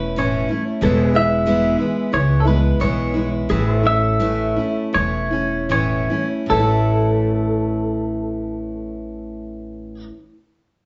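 Easygoing and sunny, this short cut from a longer honky-tonk and classic country piece moves in a straight four-beat feel. A clean, twangy electric guitar carries the melody with a bright, compressed, picked tone. A steel-string acoustic guitar with fresh strings sits up front, picking a warm accompaniment. Pedal steel, played with fingerpicks and a slide, lays sustained chords with volume swells further back in the mix, while a woody, thumpy upright bass on gut strings anchors the low end. The band plays live in one room, bathed in a large, wet studio reverb with the highest frequencies rolled off, and the pace slows from 0.8 to 6.5 seconds before a second section begins.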